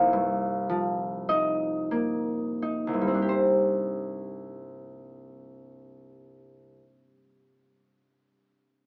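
A ringing, up-front concert harp plays alone in this mysterious, wistful classical fragment cut from a longer piece, its fingerpicked notes spanning C2 to G5 in a rubato 6/8 that slows over the first 3.3 seconds before shifting from a Cm11 chord to Cmadd9, all heard through light reverb and a small-speaker sound.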